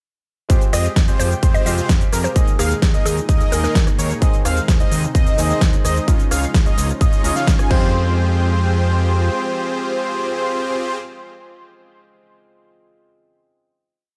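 Festival progressive house at 129 BPM in F minor, anthemic and euphoric, this short whole piece opens straight into a drop at 0.5 s where a punchy, up-front four-on-the-floor kick and a crisp big-room kit with a huge snare, cabasa, rim and crash drive beneath a fat, saturated analog bass playing eighth notes, while bright detuned supersaw chords hammer out a dotted-rhythm riff doubled by a nasal unison lead with vibrato, all pumping with sidechain and trailing delay. Behind them sit a clear grand piano with audible action noise and syncopated held chords, a slow-blooming chorused pad, and a woody, warbling FM pluck offering short answering phrases between 0.7 and 3.7 s, over chords moving from Fmadd9 through Ebsus4, Ab/Eb and Dbadd9. The drums drop out near 7.8 s for a final hit, and the piano rings on alone in digital ambience until 14.2 s.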